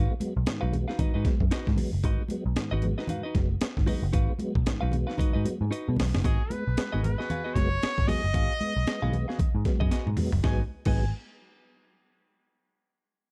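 A swung sixteenth-note groove at 114 BPM drives this cool, funky G# dorian excerpt, with a gritty, compressed breakbeat-style kit (thumpy kick, high-tuned snare) and a round, foam-muted picked bass up front, while bright, high-tuned congas sit in the background. A clean, hollow-body electric guitar with plate reverb supplies accompaniment, and a mellow tonewheel organ adds stabs colored by chorus vibrato, a fast rotary speaker and audible key click. Drum fills mark the section changes, and at 6.2 seconds a clear, distant trumpet with vibrato takes the melody over the dark, dry mix.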